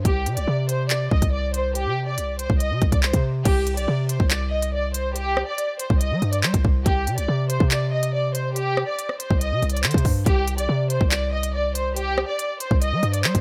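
A lush, bowed violin section with vibrato, shaded by a low-pass filter, opens this ominous, menacing half-time drill excerpt over a punchy, heavy 808-style bass, joined at 0.1 seconds by an electronic drum kit of crisp hi-hats, hard-clipped kick drum, handclaps, rim clicks and crash cymbal, the three parts sitting up front in a digital ambience.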